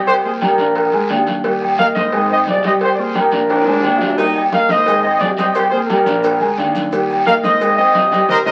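Crackling like a very old 78 rpm record and bathed in wet studio reverb, this joyful, festive salsa, cut from a longer piece, moves at 175 BPM in Eb major. Its mellow, punchy trumpet section carries the melody up front over an intimate concert grand piano with audible action noise and a dark, woody pizzicato upright bass. Ringing, distant agogo bells and timbales lead the percussion, with bright congas, a round low-tuned cowbell and a raspy guiro behind them and grainy maracas joining very quietly from 4.2 seconds, while a saxophone section with light vibrato adds a brief second line from 3.5 to 4.4 seconds over a drum fill, and the band hits an accent at 8.3 seconds.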